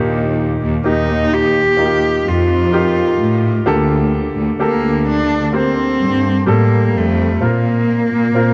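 A slow, straight 4/4 pulse at 64 BPM carries this tender, hopeful pop ballad fragment, cut from a longer piece. A rich symphonic cello section holds down the bass from the opening, its bowed ensemble tone lush, smooth and even with vibrato, sitting close and up front. A clear grand piano plays accompaniment alongside it, polished and present. At 0.9 s a single cello enters with the melody, played sul tasto with light vibrato and a soft attack, giving it an intimate, warm voice placed near the listener. The harmony moves from Eb through Gmadd9/D to Bbsus2, wrapped in light reverb, studio ambience and a dark production.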